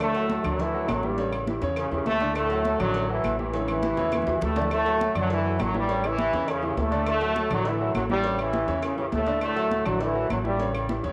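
At a brisk 204 BPM in straight 4/4, this joyful, sunny salsa fragment in D major alternates between D and A7 over a moderate echo-chamber reverb. Up front, a punchy trombone section carries the melody with light vibrato and tape echo, sounding distant and roomy in a pop style, while a clear baby grand piano with short sustain accompanies and a thumpy, woody pizzicato upright bass on gut strings holds the low end. In the background, close, dry congas with thick skins and hard hands mix with round, low-tuned cowbell and bongos, ringing metal-shelled agogo bells and timbales heard in a large room, and compressed, saturated claves, with a drum fill from 3.5 to 4.7 seconds.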